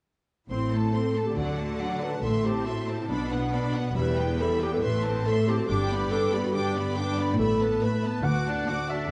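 A short cinematic passage in A dorian at 140 BPM opens at 0.5 seconds with the full string orchestra, clarinet and harp together, striking a determined, swashbuckling tone as a lush, vibrato-laden violin section carries the melody high above a second, focused violin line with a smooth top and a dark, soft-attacked solo clarinet sounding distant and roomy. Beneath them, an intense viola section fills out the harmony, a ringing fingerpicked concert harp spins arpeggios in the background, and a clear cello section joins a distant, even double bass section on the bass line, the basses dropping out at 8.6 seconds. The chords move from Am through D, Bm, Em and G to Asus2 and D, all set in a wet recital hall reverb with a softened, rounded top end.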